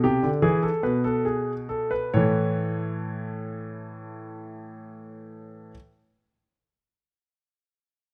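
A clear, intimate grand piano plays alone from 0.0 to 5.7 seconds in this brief cut from a contemplative yet driving baroque-style two-part invention in 4/4 at 65-78 BPM, slowing down over the opening 2.1 seconds as the harmony moves from E to A, with audible action noise caught by close, detailed microphones in a stone room with a 1.3-second reverb.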